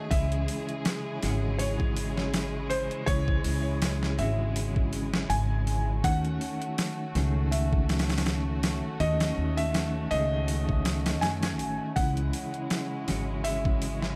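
A gritty, pitched-down boom bap sampler kit with a thumpy kick and medium-tuned snare sets a swung sixteenth-note groove for this hypnotic, melancholic trip hop passage at 81 BPM in C# minor alongside a woody pizzicato upright bass up front, while a dark, clean electric guitar with tremolo plays the accompaniment, a veiled con sordino violin section holds lush sustained chords roughened by 12-bit sampler grit, and a soft felt-muted upright piano carries an intimate melody through tape echo as the harmony moves from C#m to D#m7b5 at 6.0 s and back to C#m at 12.0 s.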